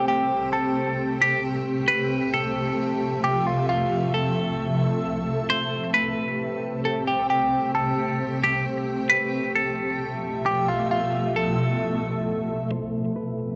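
Spacious and melancholic, this half-time hip hop excerpt moves at 133 BPM in A minor, tuned to A4 = 442 Hz. A clean, compressed semi-hollow electric guitar carries the melody through phaser, low-pass filter and analog delay, while a blurred, detuned granular cloud pad holds slow-attack sustained chords through its own built-in reverb and filter, both up front from 0.0 to 13.6 s as the harmony moves from Am7 through Fmaj9, Am9 and Fmaj9#11 and returns to Am9 at 12.7 s. Light reverb and a dry, gritty cassette-tape sound, with its top end capped at 8.0 kHz, give the recording a hazy, lo-fi character.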